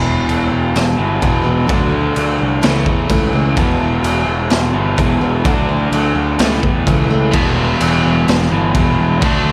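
A gritty, up-front garage sound frames this angsty, dark quiet-loud alternative rock excerpt at 128 BPM in E dorian, where a background parlour acoustic guitar picks tape-echoed arpeggios until 7.3 s, a bright overdriven garage guitar with spring reverb drives the riff, a round fuzz-laden picked bass holds the low end, a boomy, saturated small-room drum kit with crash, kick and snare enters at 0.3 s, and a crunchy overdriven second guitar takes up a riff from 7.3 s as the chords move from E5 through D and A/C# to Em.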